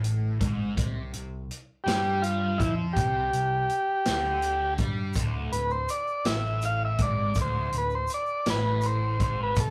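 A slow 6/8 pulse at 55 BPM drives this mysterious, dark psychedelic rock excerpt in D dorian, with a vintage drum kit's punchy kick, medium-tuned snare and hi-hat up front alongside a picked electric bass and a double-tracked fuzz guitar riff colored by distortion and phaser. At 1.8 seconds a buzzy transistor combo organ takes the melody up front with light vibrato, soloing over a move from Csus2 to D5, and a grainy, very quiet tube shaker joins at 5.1 seconds. The rough rehearsal-room recording sits in a modest small-room reverb.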